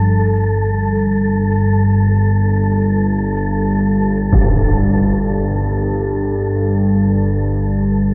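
An evolving, up-front analog drone of sawtooth and pulse-wave tones, slow to rise and long to fade, sustains from G1 to G2 with chorus, setting an ominous, dark ambient mood in free time. Above it, an airy, breathy wind-like texture of tuned noise hums around A4 with its own reverb, while very quiet bronze gamelan-type bossed gongs, soft and round with a beating shimmer from padded beaters, play arpeggios around F3 until 4.8 seconds. A huge, bright, low-pass-filtered impact lands at 4.3 seconds, and the whole excerpt sits in a vast ambient reverb with a long decay.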